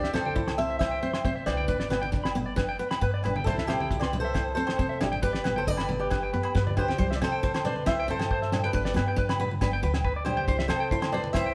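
A warm, joyful highlife guitar band excerpt at 136 BPM in C major, cut from a longer piece, where an up-front, boxy fingerpicked swing-style acoustic guitar carries the melody over full-bodied picked steel-string acoustic accompaniment, twangy, slightly broken-up electric guitar arpeggios in spring reverb, woody pizzicato upright bass, a dark, cloth-damped thuddy drum kit with a fat snare and a drum fill from 6.1 to 7.0 s, and background ringing agogo bells and low-tuned, hard-handed congas, all played live together in one room.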